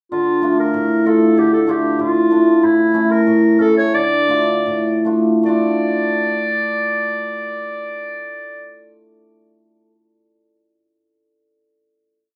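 Klezmer with a bittersweet, festive mood in 2/4 and D harmonic minor at 71-95 BPM, where a clear, classical-style clarinet with slapback echo and plate reverb sings an ornamented modal melody over hammered, shimmering cimbalom off-beat chords in triad voicing, the tempo slowing from 2.6 seconds into a final chord at 5.5 seconds, with the cimbalom ringing on to 9.9 seconds in a small, roomy space heard from further back.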